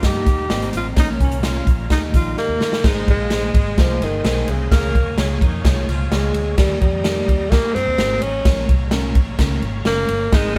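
Uptempo 1960s-style soul with an uplifting, danceable feel, this excerpt features a breathy, intimate tenor saxophone carrying the melody up front, with scooped notes, vibrato and a soft attack, over a bright saxophone section in the background that drops out at 6.3 seconds. A swinging big-band drum kit with a tight kick sits forward in the mix and plays a fill just before the shift to the second section at 2.8 seconds, anchored by a dark, foam-muted fingered electric bass. Mellow tine electric piano, a very quiet reedy tonewheel organ with fast rotary speaker and key click, and a slightly broken-up, lo-fi electric guitar riff with spring reverb fill out the light room sound of a band playing live together.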